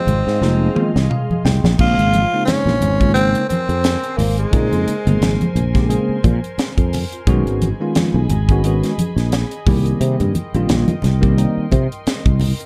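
Electric jazz fusion in Bb dorian at 88 BPM with a lightly swung 16th-note feel, this slick, nocturnal cut opens with a growling, raspy tenor saxophone melody that carries a slapback echo and stops at 5.4 seconds, while a crisp drum kit with a high-tuned snare and punchy kick plays a fill and a bell-like tine electric piano adds its own fill before the harmony settles on Bbm9 at 1.8 seconds. Underneath, a sustaining fretless bass sits up front with a growly, punchy tone, congas with a thick skin murmur in the background, and a quiet, evolving wavetable pad with chorus and its own reverb holds chords high above through to the end. The dark production stays dry and close, moving through B6 and Cm7 before the piece is cut off.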